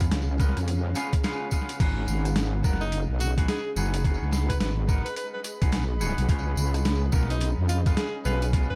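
A heavy, dark wobble bass sits up front in this playful, swaggering glitch hop excerpt, its detuned sawtooth-and-sine tone thickened by chorus and tube saturation. Beneath it, a pitched-down, thumpy electronic kick and a gritty, compressed sampler-style kit with crash, hi-hat, rim click and a medium-tuned snare drive a 107 BPM groove in 4/4 with a swung sixteenth feel, while a jingly, close tambourine adds tape-echoed shimmer. A clean, twangy electric guitar plays picked stabs that pump against the beat through tape echo, and a cloudy, evolving granular pad drifts in the background with built-in reverb and its own pumping motion. An electronic swell sounds faintly in the background at 1.1 seconds, and at 2.8 seconds a bright tenor saxophone takes the solo melody with light vibrato, a smooth top and lo-fi 12-bit grit. Set in G# dorian over C#7 and G#m7 chords, the echo-heavy mix carries a layer of vinyl crackle.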